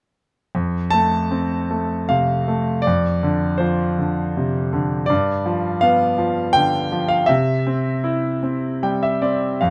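A clear, up-front concert grand piano with a deep, natural bass carries this peaceful, lyrical classical solo in an unhurried rubato three-time, drifting from F through Dm7/F and G7 to C in light reverb before a brief fill at 8.4 seconds closes the cut.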